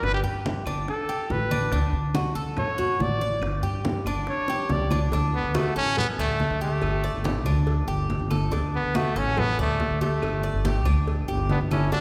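A bright, punchy trumpet opens this sunny, relaxed Cuban son and guajira excerpt with a solo full of vibrato, set over metallic, double-strung arpeggios on the Cuban tres and a dark, thumpy pizzicato upright bass up front. Low-tuned congas and round bongos and cowbell sit in the background alongside very quiet woody claves, and a drum fill at 4.5 seconds leads into a new section at 5.1 seconds. At 11.5 seconds a warm, close-miked trumpet with light vibrato adds a second line, and the whole excerpt sits in the wet reverb of a concert hall.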